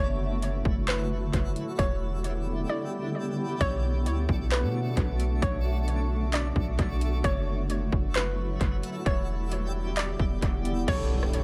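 Spacious and hazy, this atmospheric cloud-rap excerpt moves at 132 BPM in a half-time 4/4 feel, settling in B minor over a cycle of F#m7, Em7 and Bm9 chords. A granular cloud pad holds blurred, evolving chords bathed in its own reverb and pumped by sidechain, while a bright, twinkling granular texture sparkles quietly above with an octave-up shimmer. A hollow, bouncy square pluck carries a narrow, mellow melody, its detuned tone thickened by chorus and echoed by analog delay. Up front, a deep, boomy 808-style bass with a dark sine core pairs with an electronic trap kit of hard-clipped kick, metallic hi-hats, handclaps, rim clicks and crash, its tape-tinged sound also touched by delay. A silent gap opens at 2.7 seconds. Near the close, a fingerpicked acoustic concert harp rings in with delayed arpeggios at 10.9 seconds, and a very quiet electronic impact lands at 11.0 seconds, all in a dry but echo-heavy mix.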